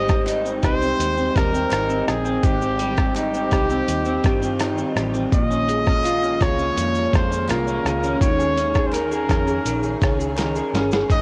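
A clear, smooth-topped trumpet with gentle vibrato sings the melody over a slightly broken-up electric guitar bathed in lush chorus and a dark, round, foam-muted bass, opening this sunny, hazy bedroom-pop excerpt at 83 BPM in Ab major. A compressed, muffled sampler-style drum kit with a thumpy kick sits up front alongside faint, distant group handclaps, and a very quiet shimmering, ethereal pad drifts in at 2.8 seconds beneath chords moving from Abmaj7 to Bbm7 and Eb7sus4. The cassette-tape haze and light reverb give the home recording a soft lo-fi glow, and a drum fill arrives at 10.4 seconds.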